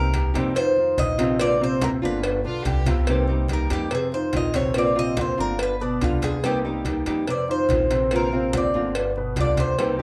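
Nostalgic and sultry, this short cut from a longer Cuban son and guajira piece moves at 143 BPM in 4/4 with a straight feel, set in C minor over a repeating cycle of Cm7, Fm7, Bbadd9 and G7. The Cuban tres carries the melody up front, its picked, doubled strings giving a metallic ring with some octave doubling, and it takes a solo from 3.1 seconds to the end. Beneath it, a fingerpicked nylon-string guitar with a deep classical tone supplies accompaniment, while a dark baby grand piano plays mellow arpeggios with long sustain. The upright bass is woody and thumpy, plucked on gut strings. Low-tuned congas with a thick skin sit in the background alongside a round, hard-struck cowbell, and a chamber violin section adds a brief, intimate bowed line sul tasto with light vibrato and a soft attack around 2.5 seconds. The band plays live together in a small room with moderate ambience.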